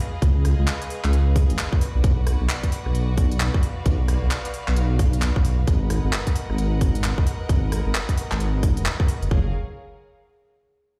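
Bouncy and sunny, this two-step UK garage cut from a longer piece moves at 132 BPM in F# major, its swung sixteenths giving the groove a skipping lilt. A clear chamber violin section holds sustained chords from the opening moment, its bowed ensemble tone biting and earthy with light vibrato, sitting low in the mix and pumping under sidechain compression. At 0.2 seconds a dark detuned saw bass arrives up front, deep and rumbling with a beating, sustained sawtooth edge, alongside a tight, layered electronic kick. A garage kit of crisp hats, handclaps and rim clicks fills out the rhythm, its tape-warm drums re-recorded in a large room. The harmony moves through C#7, Bm and G#m7 before landing on an F#maj9 chord at 9.3 seconds, and the parts drop away near 9.5 seconds, the whole mix carrying the sound of a big system in a bare space.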